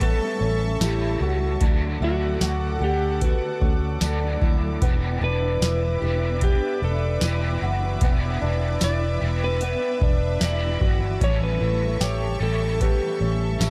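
This ethereal, haunting dream pop excerpt opens with six parts together: a booming analog drum machine up front with deep kick, crisp snare, metallic hats and tambourine; a round, punchy, foam-muted electric bass; a shimmering, octave-doubled fingerpicked twelve-string acoustic guitar with subtle chorus and tape echo; a dark, overdriven semi-hollow guitar with harmonic tremolo and ensemble chorus; and a lush, detuned sawtooth pad holding slow-attack chords, while a clean lap steel carries the melody with slide and volume swells through tape echo, the gritty hardware recording wrapped in digital ambience.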